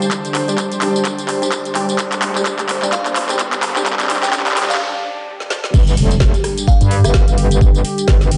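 A metallic, aggressive FM wobble bass, saturated, compressed and thickened with chorus and overdrive, sits up front and pumps against the kick once the drop lands at 5.7 seconds in this swaggering, gritty bass house fragment cut from a longer piece. Before that comes a build-up: a bold, punchy orchestra-hit-like sawtooth stab with a filter sweep, reverb and analog delay rides over an evolving, resonant pad of detuned chords that pulses with sidechain pumping. A cloudy granular pad drifts blurred in the background, and from 2.9 seconds a glassy, crystalline FM bell melody chimes distantly with chorus and delay. A knocking electronic kick drives the swung sixteenth-note groove alongside an up-front garage kit of woody snare, metallic hats, handclaps, rim clicks, tambourine and crash. The kit plays fills and opens into a brief break at 4.8 seconds, while a very quiet riser, noise sweep and impact mark the transition. 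A wet plate reverb soaks the mix in a dreamy haze, and its top end is gently rolled off.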